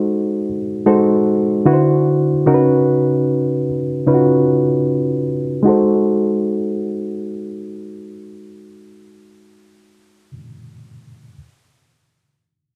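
A 16th-note swing of 55% at 75 BPM in 4/4 carries this smooth, introspective R&B fragment, where a lone reed electric piano, reedy, worn, slightly out of tune and clean, heard up front through its built-in speakers, plays G#7b9, D9 and C#9sus4 chords between C#3 and B#4 under a low-pass filter that sweeps from 0.0 to 5.7 seconds, returning to G#7b9 at 5.7 seconds, inside a moderate plate reverb with a 3.0-second tail and tuned to A4 = 439 Hz.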